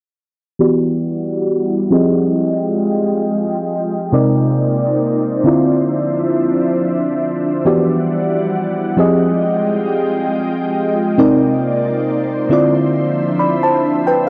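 R&B with a late-night, moody feel, this short excerpt from a longer piece moves at an unhurried pace with a light swing. A mellow FM electric piano carries the accompaniment from 0.6 seconds, its round, dark tone coloured by chorus, phaser and a faint noise layer, each note striking quickly and then decaying. An ethereal, airy pad joins at 0.9 seconds with sustained chords, built from detuned sawtooth and triangle voices in unison, softened by a slow attack, long release, ensemble chorus and its own reverb. The harmony cycles through lush ninth chords, Em9, Fm9, Cm9 and Dm9, twice over, while a filter sweep runs across the whole passage. Both parts sit up front within a moderate, lush hall reverb, and the cassette-tape home recording lends the sound a hazy, lo-fi patina.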